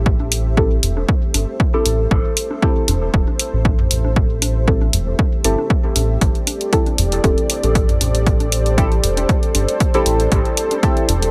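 A punchy, overdriven electronic kick sits up front in this hypnotic, hazy slice of dub techno, pulsing at 117 BPM in 4/4 with a light 16th-note swing and anchored on a single Am7 chord in A minor. Beneath it, a round analog bass holds the low end between E1 and A1, its detuned, tube-saturated tone dark and sustained, breathing with sidechain pumping. A deep, mellow chord stab in the C4 to A4 range carries a soft, nasal character with a filter sweep, its decaying hits smeared by chorus, phaser and dub echo. Above it, a moody, full-bodied analog pad with a slow attack sustains evolving chords from G4 to E5, thickened with chorus and pumping against the kick. A layered, overdriven electronic hi-hat enters at 0.3 seconds, while overdriven analog congas and toms sit in the background, sent through dub echo. The mix is dry, with little reverb, in a short cut lifted from a longer track.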